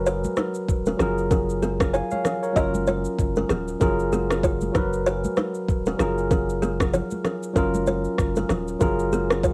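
Romantic and sunny, this afrobeats passage moves at 96 BPM in 4/4 with a swung sixteenth-note feel, settled in F# major and cut from a longer piece. A bright, clean tine electric piano sits up front with the accompaniment, carrying lush ninth chords that circle from Bmaj9 to F#maj9 and D#m9/F#, its tone tinted by cassette tape. Beneath it, a deep, punchy sine sub bass with a pitch-drop attack holds sustained low notes. A buzzing kalimba plays the riff from 0.1 seconds, its woody, hollow-box pluck mellow and dark, colored by cassette tape and tape echo. A minimal electronic kit of deep kick, rim click and shaker is overdriven and pushed forward, while soft-handed, high-tuned congas with a thick, damped skin sit in the background. Light reverb and the homespun cassette character give the whole passage an intimate, lo-fi glow.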